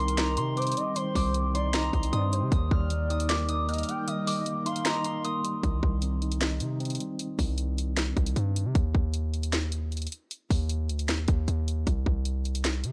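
Brooding and hard-hitting, this half-time trap excerpt in C minor at 154 BPM opens with a ringing, fingerpicked concert harp melody high in its range with delay, joined by a smooth, gliding portamento lead with chorus and vibrato, a mellow tine electric piano under a low-pass filter, and a very quiet, ethereal pad of detuned saw and triangle layers. Up front, a punchy, saturated 808-style bass and an overdriven electronic trap kit of hard-clipped kick, sharp snare, bright hats and handclaps drive the groove, with the kick dropping out from 4.1 to 5.6 seconds. The melodic parts fall away one by one until the electric piano stops at 8.8 seconds, leaving the dry, heavy 808 and drums to carry the rest alone.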